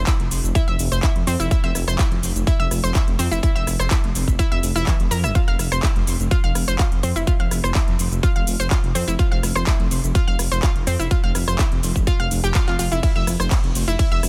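A straight 4/4 pulse at 125 BPM drives this euphoric, uplifting progressive house excerpt, where a punchy, up-front electronic kick and a big-room kit of handclaps, metallic hats, ride cymbal, rim click and shaker in small room ambience, its hats, percussion and cymbals pumping, join a deep, rumbling, detuned saw bass and a round, warbling vintage analog pluck whose chorus- and delay-coloured arpeggios range from E3 to F6 over C/F and F5 chords in a dense, heavily limited modern master with little reverb.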